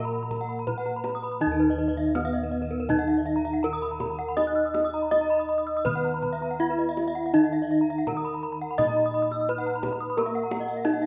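A shimmering, hypnotic stretch of Balinese gamelan opens at once with bronze metallophones and bossed gongs, cut from a longer piece and moving at 82 BPM in 4/4 with uneven beats, in an Eb pelog tuning set to A4 = 438 Hz. The ringing melody metallophone, struck with a wooden mallet, sits mid-forward and up front between Cb4 and Eb5, its paired tuning producing shimmering beats. Beneath it, a softer metallophone accompaniment spans Eb3 to Eb4, while round, beating bossed gongs carry the bass from Eb2 to Eb5. Two metallophones spin arpeggios high above: one is close-miked, dry and full, reaching up to Fb6+35c, and the other, struck with a horn mallet, rings bright up to Gb6. A tight, acoustic kendang joins at 0.3 s with a live-room sound, and after a brief opening section the music settles into a longer second passage from 1.4 s. The light, small-room reverb and rough home demo mix leave the top end dulled.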